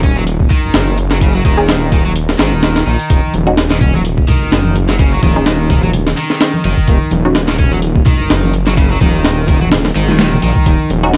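Swaggering and gritty, this short breakbeat cut moves at 127 BPM in 4/4 with a light 16th-note swing, sitting in E-flat minor pentatonic over an Ebm7 chord. Up front, a compressed, sampler-style drum kit drives the groove with a thumpy kick, a high-tuned snare and hi-hat, while a thick, detuned saw bass with a menacing, beating, saturated tone holds down the low end throughout. A crunchy, overdriven electric guitar plays a bright, picked, double-tracked riff until 10.9 seconds. A filtered dub chord stab, muted and deep yet wave-folded with a plucky filter, enters at 1.6 seconds through phaser and delay, carrying a filter sweep, and returns with a brief hit near the end. Congas join at 3.3 seconds, sounding distant in a large room behind the rest, and the whole cut carries light reverb and a layer of vinyl crackle as it breaks off from a longer piece.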